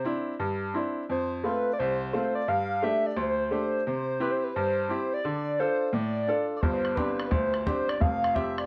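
A moderate studio reverb frames this short cut from a longer Celtic folk hornpipe, with a wild, driving mood at 173 BPM in a swung 4/4. A pure, round sine lead with chorus and warbling vibrato carries the melody throughout, while a brilliant baby grand piano sits up front, supplying the accompaniment over chords moving from Cadd9 through F, Gsus2, C and Dm. At 6.6 seconds a damped, tight bodhran joins as the section repeats, adding its small-room snap until the close.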